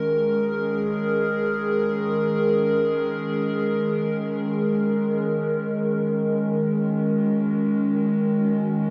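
In free time, this melancholic, reflective ambient fragment is cut from a longer piece and rests on a single warbly, tape-like pad holding a G#9sus4 chord between D#3 and A#4, tuned to A4 = 441 Hz. Detuned square, triangle and sawtooth tones give the pad a nostalgic, lo-fi wobble, its slow attack and long release softened by chorus, phaser, its own reverb and a diffuse ambient delay, and it sits mellow and up front. A huge, wet reverb with a 7.6-second tail frames the dark production, and a new section begins at 5.7 seconds before the sound ends at 8.9 seconds.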